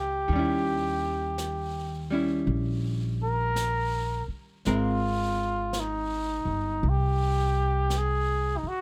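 A slow 55 BPM swung 4/4 pulse of brushed snare and hi-hat, entering at 0.3 s and sitting low in the mix, carries this smoky, wistful jazz ballad fragment. A breathy, mellow trumpet sings the melody with light vibrato and scooped notes over a woody, thumpy pizzicato upright bass and a dark, clean hollow-body archtop guitar, moving from Eb7b9 to Abmaj9 in a dry, closely miked recording.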